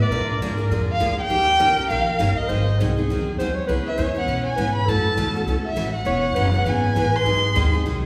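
A bowed violin with vibrato and expressive portamento carries the melody from the opening, joined at once by a punchy, forceful clarinet on a second line and a woody, thumpy pizzicato upright bass on gut strings, with a bright picked steel-string acoustic guitar entering at 0.1 s to comp through dominant and minor seventh chords. This swinging, virtuosic jazz manouche excerpt has a smooth, up-front violin top and a dark bass, while the clarinet sits present and jazz-styled beneath the lead. The ensemble is set in a wet, hall-like reverb that gives the short, cut-off passage a spacious, concert-stage sound.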